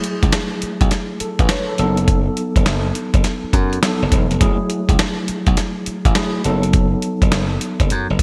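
A mellow tine electric piano and a gritty, sampler-style drum kit with a thumpy kick, medium-tuned snare, hi-hat and gated reverb open this confident, slick new jack swing excerpt at 103 BPM in F# dorian, joined at 0.2 s by a bright, up-front slap bass as the swung groove cycles between F#m9 and B7/F# under light digital ambience and a bright 1980s-style sheen.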